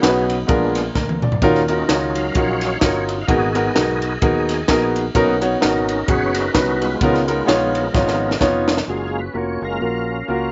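Swung eighth notes in 4/4 drive this short, jubilant, uplifting uptempo gospel excerpt. A crisp, acoustic fusion drum kit sits up front in a small, pumping room, with a tight kick, a high-tuned snare, bright cymbals on the ride and toms, playing fills at 1.0 and 7.9 seconds before the drums stop at 8.9 seconds. A woody, natural upright piano, also up front, plays the accompaniment while a growly fingered electric bass anchors the low end. The tonewheel organ carries the solo across the whole passage, full and lightly overdriven through a slow rotary speaker with chorus vibrato. The harmony moves through lush ninth and thirteenth chords to a bright major-ninth arrival as the drums drop out. The mix is dry, with a mellow, rolled-off top.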